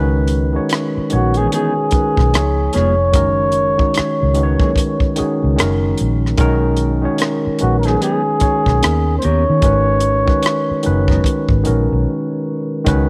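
R&B with a neo-soul lean, this short cut from a longer piece feels smooth and relaxed, riding a swung sixteenth-note groove in 4/4. A worn, slightly out-of-tune tine electric piano sits up front through its built-in speakers, laying down clean chords that drift from C#7sus2 through F#add9 and B6 to a closing G#m9, while a dark, foam-muted fingered electric bass adds a round, amped low end just as close. A compact cocktail drum kit enters at 0.3 seconds with a dry acoustic sound: hi-hat, rim click and a punchy kick. At 1.1 seconds a trumpet with a bucket mute takes the solo melody in a jazz style, veiled, breathy and whispered, with soft attacks and scooped notes that make it feel intimate. A mellow, fingered electric guitar traces a clean second line in the background, and the whole track sits in light reverb before a brief break at 12.1 seconds.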